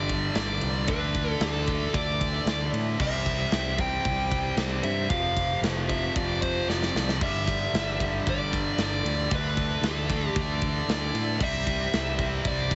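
Hard rock at 114 BPM in a straight 4/4, this energetic, anthemic passage is cut from a longer piece and runs about 12.8 seconds as a single section. A dark, smooth overdriven lead guitar carries the melody between A4 and G5 over a chord cycle of G5, D5, C and F5, while two bright overdriven guitars play the riff, one biting, the other sitting in the background. A growly, punchy picked bass anchors the low end, and a very quiet, thick tonewheel organ holds sustained chords with gritty overdrive, chorus vibrato and a slow rotary speaker. The big acoustic drum kit enters at 0.1 seconds with a punchy kick, medium-tuned snare, crash and ride, and a drum fill lands between 6.7 and 7.2 seconds. The sound is heavily compressed and radio-like, with its highs rolled off and a small room ambience around the band.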